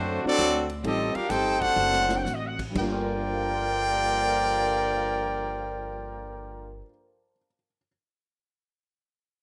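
A bright, close-miked trumpet section leads this brief, swinging big band jazz fragment in G minor, carrying the melody up front with light vibrato over a mellow trombone section, a fingerpicked steel-string acoustic guitar and a woody, growly pizzicato upright bass. The tempo slows through the opening seconds, where a drum kit with a punchy kick sits in the background and plays a fill at 1.8 seconds before dropping out at 2.9 seconds, as the harmony moves from D7 toward a closing Gm9. A dark, slightly detuned upright piano with audible action noise lingers alone until 7.9 seconds, and the whole has the small-room ambience of a rough home demo.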